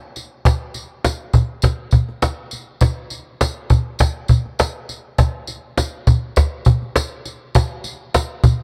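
A woody cajon sits up front and close, played with soft hands so its faint snares only lightly buzz beneath each stroke. It carries this short soul fragment from 0.2 seconds to the end at 8.6 seconds in a straight, danceable 4/4 feel. A jingly tambourine runs alongside for the same span, mixed well beneath the cajon with a close, warm acoustic tone. The production is dark and dry, with little reverb, which keeps both hand percussion parts intimate and present. The mood is joyful throughout, and the piece moves into a new section at 7.5 seconds just before the clip is cut from the longer piece.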